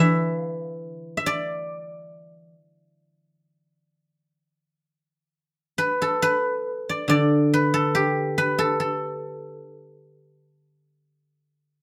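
Set in light reverb, this short excerpt of Chinese traditional music features a solo acoustic guzheng, played with fingerpicks and placed up front, its silvery, ringing tone spanning D3 to E5. The mood is serene and pastoral, and the rubato phrasing moves freely. A new passage begins at 5.3 seconds, and the guzheng sounds until 11.0 seconds.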